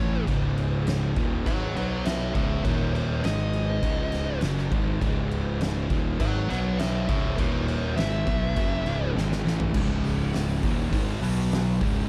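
A fuzz lead guitar solo opens this ominous, brooding stoner and doom metal excerpt at 101 BPM in C# minor, its dark, distorted melody trailed by tape echo over riffs from two thick fuzz guitars (one in the background, one very quiet), a bright, double-tracked distorted guitar tucked low, and an overdriven fuzz bass played direct and amped. An oversized, low-tuned acoustic drum kit enters at 0.3 seconds, gritty and up front with a boomy kick, fat snare and dark cymbals in a pumping big room, and its fill at 9.2 seconds leads into a new section at 9.7 seconds after the lead guitar stops. It all sits in a small room ambience with a dark, warm production.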